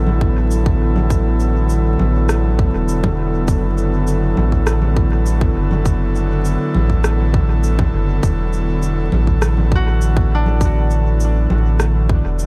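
Hazy and deep, this ambient dub fragment rests on an airy, breathy pad with chorus and a round, soft sub bass up front, while a tight, tape-warm electronic kick and small-room electronic congas, cabasa and rim click with dub echo move alongside a bed of vinyl crackle, and a ringing, fingerpicked concert harp enters at 9.8 seconds with arpeggios in echo.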